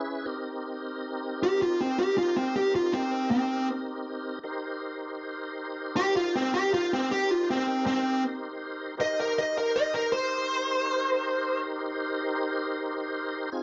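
A full, lightly overdriven tonewheel organ with chorus vibrato, slow rotary speaker and plate reverb holds a sustained C minor seventh chord from the start of this soulful, smoky slow blues in 12/8 at 53 BPM, and at 1.4 seconds a dark, smooth overdriven electric lead guitar steps up front with a picked solo melody that runs until 11.6 seconds, both parts sitting in a moderate studio reverb in a passage cut from a longer piece.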